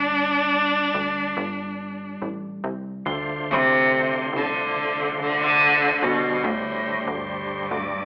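A tender, heartfelt pop ballad excerpt at 71 BPM in 4/4, where a rich, bowed solo cello with vibrato carries the melody up front despite a slightly distant, focused tone, over a mellow tine electric piano in the background and a punchy, plucky analog bass with a fast, decaying filter attack. At 3.1 seconds a gritty, overdriven tonewheel organ enters with thick sustained chords, its percussive third-harmonic click colored by chorus vibrato and a stopped rotary speaker, as the harmony moves from Gsus2 to Dm7 and Gsus4/D. The band sounds as if playing live in one large, reverberant room, filtered through a lo-fi AM radio sound.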